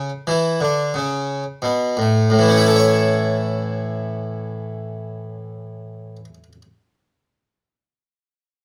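Radiant and dance-like, this brief classical excerpt from a baroque-style suite movement features a solo harpsichord, airy and brilliant with the full, plucked sound of a French-style instrument with three sets of strings, placed up front in light reverb, played with rubato that slows through the opening 2.3 seconds before a second section follows until the harpsichord falls silent at 6.6 seconds.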